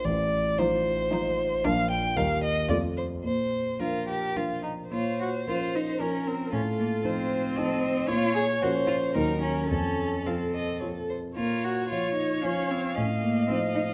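A quick, lively and cheerful classical-period piano quartet movement in 3/4 at 107-116 BPM with a rubato feel, in which an up-front violin sings a smooth, even melody with vibrato over a deep-bassed concert grand, while from 0.6 s a dark, expressive second violin with portamento and a rich, bowed cello add second lines, the Bb major opening turning to Bb minor at 4.9 s within a close, detailed recital hall sound with moderate reverb.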